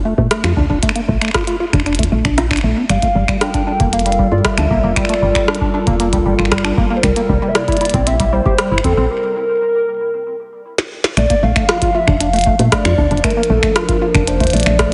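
Playful and intricate, this IDM fragment at 116 BPM in Bb lydian opens with a round, woody FM bass carrying tube saturation, a rubbery acid bass tracing resonant arpeggios through tape echo, a deep analog kick, and an up-front glitchy kit of finger snaps, clicky hats, rim clicks and a tiny snare, both drum parts set in studio reverb. A detuned, full-bodied lead with chorus, tremolo and tape echo enters at 2.9 s, joined at 3.3 s by a dark, lo-fi pad whose sustained chords carry chorus, built-in reverb and 12-bit sampler grit, over a Bbmaj7, Gm9 and C7 progression. A break arrives at 9.1 s and a drum fill leads into a new section, all within a lush hall and a heavily compressed, radio-like sound.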